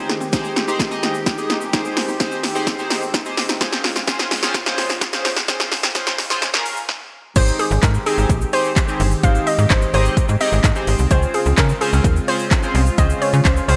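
An overdriven deep house drum kit, up front with a deep kick, punchy snare and metallic hats, drives this upbeat, summery dance-pop clip at 128 BPM in Ab major, moving between Abmaj7 and Dbmaj7 in a straight 4/4. From the start, a glossy, retro chorused polysynth and an airy filtered supersaw swell pump under sidechain, joined by very quiet arpeggios from a woody mallet-like synth pluck and a grainy, distant egg shaker, through a build-up with a drum fill and filter sweep that halts briefly before the drop at 7.4 s. There a snappy, digital slap-like FM bass and a hollow, bouncy square pluck melody with chorus and digital delay enter, and the mix sits in a lush hall reverb with a bright 1980s-style sheen.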